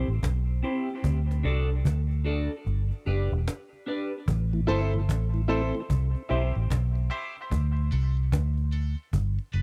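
A dark, clean picked electric guitar treated with phaser and dub echo opens this spacious, heavy dub reggae excerpt alongside a round, punchy foam-muted fingered bass, with a snappy, saturated cajon played with soft hands entering a moment later. The bass and cajon sit up front in a dry, close 1970s-style small room during a swung break over C, D and G. A filter sweep begins at 4.3 seconds, after which a mellow tonewheel organ with key click and slow rotary speaker slips into the background and a clear baby grand piano adds short-sustained stabs through dub echo, while the guitar drops out at 7.4 seconds.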